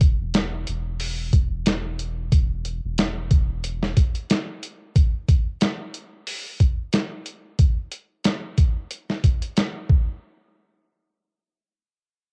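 A gritty, pitched-down boom bap sampler-style drum kit sits up front with a thumpy kick, medium-tuned snare and hi-hat, compressed and tape-colored, swinging at 91 BPM until 10.0 seconds, while a deep, round, soft dub sub bass with tube saturation sustains beneath it for only the first 3.9 seconds of this melancholic, hypnotic trip hop excerpt, recorded at home on cassette in a dry room.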